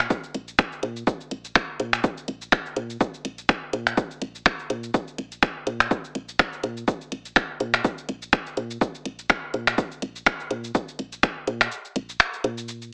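The house drum kit leads this minimal techno excerpt, with finger snaps, a shaker and metallic hi-hats that are overdriven, layered and placed up front, carrying the feel of a large room. It runs at 124 BPM in 4/4 with a 56% swing on the sixteenths, giving a hypnotic, sparse mood. An overdriven, punchy electronic kick enters at 0.1 seconds and drives the groove until it stops at 11.3 seconds, also up front and with the same large-room character. Underneath sits a soft, woody FM bass between Bb1 and Bb2, round and dark, with a fast attack, a decaying tail and sidechain pumping. The whole recording has a heavily compressed AM radio sound with light reverb, and it is cut from a longer piece, ending at 12.9 seconds.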